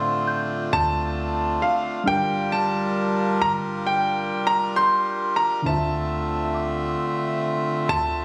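A straight 4/4 pulse at 67 BPM carries this sensual, longing R&B fragment in D minor, moving from Dm7 to Gm7 and back to Dm7 over 8.2 seconds. Muted, felt-like synth keys with a chorused, dark edge and a reedy, up-front accordion hold the harmony over a soft, round 808-style bass, while a delicate, bell-like celesta with tape echo sits high in the background. At 0.7 s a clear, intimate baby grand piano takes the melody up front, its action noise audible and its notes sustaining long, all heard through club reverb as if captured on a phone in the room.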